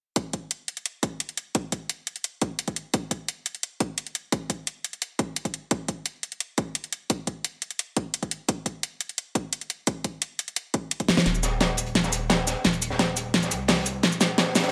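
Soulful and melancholic, this liquid drum and bass excerpt runs at 173 BPM, opening with a punchy, layered electronic kick and a pop drum kit of fat snare, metallic hi-hats and cabasa, both up front in a small room ambience with studio reverb. After a drum fill at 11.1 seconds, the kick drops out and a build-up begins at 11.3 seconds, where a dark, gritty breakbeat kit with a high-tuned snare and rolled-off top joins the pop kit. Beneath it enters a deep, thick, sustained saturated sub bass, spanning a range of Eb1 to C2.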